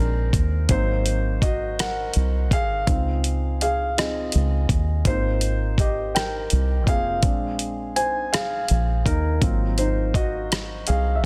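A grand piano with a deep low end and short sustain opens this slow, sensual six-eight R&B passage in Ab major at 55 BPM, playing solo from 0.0 s over chords such as Bb7, Dbmaj9 and Ab13, while a round, dark, foam-muted fingered electric bass sits beneath it. From 0.3 s a gritty, compressed sampler-style soul kit joins with a thumpy kick, hi-hat and rim click, its snare softly clipped. All three parts sit up front in a dense, heavily limited modern master with digital ambience, and the clip is cut from a longer piece.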